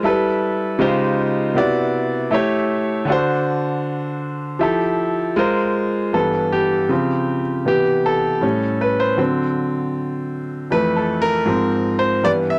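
This is a dry, close recording in a 1970s studio style, with a light touch of reverb around a single baby grand piano placed up front. The piece is a short soul passage in G major at 79 BPM in a straight 4/4, with a warm, lush mood, and the instrument is tuned slightly low, to A4 = 436 Hz. The piano plays solo throughout, ranging from F2 up to E5, and its tone is clear and natural, with a long sustain and the noise of its action audible. Rich extended harmonies move from G6/9 through C#maj9#11, Cmaj9#11, A7 and D7 to Fmaj9 and Ab6/9. At 6.1 seconds a second section returns to this progression with plainer voicings such as C#maj7#11, Cmaj7 and Fmaj7. Cut from a longer piece, the passage ends at 12.6 seconds.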